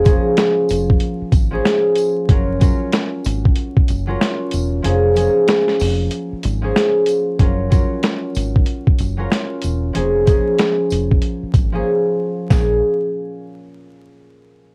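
A swung boom-bap groove rides on a compressed, pitched-down sampler kit with a thumpy kick and a high-tuned snare sitting up front, its kick dropping out from 4.8 to 7.4 seconds and the whole kit falling away briefly from 11.9 to 12.5 seconds. A fingerpicked, ringing concert harp carries the accompaniment through a cassette-tape haze over a dark, foam-muted electric bass that stays round and punchy, while a jingly tambourine sits close and dry in the background. The mood is gritty and tough, the room nearly dry and the home cassette sound dusted with vinyl crackle, cycling between minor-seventh and major-seventh chords in this short cut from a longer piece.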